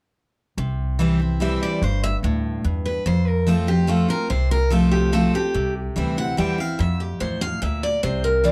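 A bright, picked auditorium-size steel-string guitar and a woody pizzicato upright bass open this lively, rustic bluegrass excerpt in three-four time, moving between C and F, before a full-bodied dreadnought guitar enters up front with the picked melody at 1.4 seconds, all captured in a dry, close 1970s-style studio sound with light reverb.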